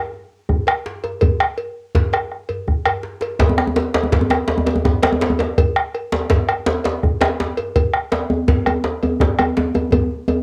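Powerful and driving, this West African drum ensemble excerpt moves at 110 BPM in 12/8 with a straight feel. A tight, cracking djembe sits in the background from the start, joined by a round, saturated bombo up front and a metallic, close and dry cowbell, and after a drum fill at 2.5 seconds a second, deep djembe enters up front at 3.4 seconds. The home cassette recording has moderate studio reverb.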